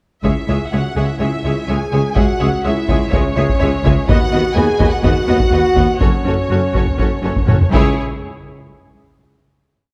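A warm, roomy scoring-stage sound frames this brief, heroic orchestral film cue, with close, dry taiko drums pounding a heavy-stick ostinato up front, then a fill from 7.5 to 8.0 s leading into a final hit that rings out until 9.9 s. Distant, lush violins carry an intense, clear vibrato melody doubled at the octave, while a second violin line with expressive portamento and smooth, even violas hold repeated notes and sustained chords alongside a dark French horn section. Beneath them a very quiet, focused cello section sustains the bass, doubled in the background by a mellow tuba and a smooth-topped double bass section as the harmony moves from C# minor through B over D# and F# minor back to C# minor.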